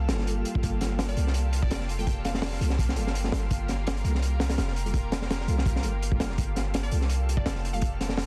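A dense, heavily limited mix with vinyl crackle and little reverb frames this atmospheric, nostalgic drum and bass excerpt at 167 BPM in G minor, where a crunchy, saturated breakbeat kit with a punchy kick and high-tuned snare drives over a boomy 808-style bass, a lush detuned pad holding a Gm9 chord, a very quiet airy wind-like noise texture, soft tonewheel organ stabs with key click and dub echo, and a glassy wavetable pluck melody that surfaces at 1.1 and 6.8 seconds.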